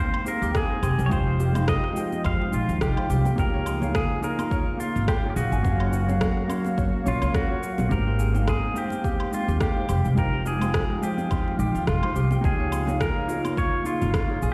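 Sunny and smooth, this sunset chillout excerpt moves at 106 BPM with a gently swung 16th feel, drifting through lush ninth and sixth chords as a bright, twangy pedal steel guitar carries the melody with slide, volume swells and tape echo. Beneath it, a dark, clean electric guitar plays compressed accompaniment, a breathy chorused pad sustains the harmony, a ringing Celtic harp adds delayed arpeggios, and a faint wind-like tuned noise texture hovers softly in the background. Overdriven electronic woodblock, cabasa and rim click enter almost at once, a woody, thumpy upright bass sits up front, and a deep, overdriven electronic kick joins from 0.5 seconds, alongside very quiet, close bongos and congas, all set in a stone-room ambience.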